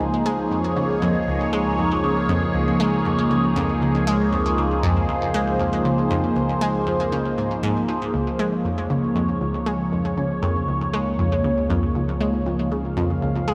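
A straight 4/4 pulse at 118 BPM drives this cosmic, expansive stretch of ambient, sequencer-driven space music in Db major, cut from a longer piece and held on a single Db chord for its 13.5 seconds. Up front, a bright, detuned sawtooth pluck with a noise layer and fast, decaying attack plays a riff through chorus, phaser and delay, while a swirling, nasal, wave-folded pad sustains slow-attack chords through its own phaser and chorus. Beneath them a fat, saturated bass holds a low Db, and a wet cathedral reverb with a 6.6-second tail places the whole mix in a vast, echoing space.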